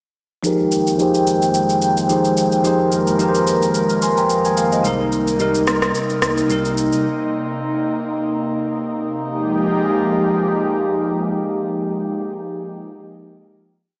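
A steady electronic shaker, soft kick and syncopated rim click set a swung amapiano groove at 109 BPM in 4/4, their overdriven, small-room sound carrying this deep, hypnotic F minor piece until 7.0 seconds. Up front, a bright, bell-like tine electric piano pushes spread Fm11 and Cm7 chords through lush chorus with grace notes and short fills, over an airy, breathy, detuned pad with a noise layer and moving notch. A mellow sine sub bass with octave adds a dotted figure in the background from 4.8 seconds, a filter sweep runs through the breakdown, and the pad holds a final Fm11 chord from 9.2 seconds, with the mix soaked in dreamy hall reverb and a small-speaker tone.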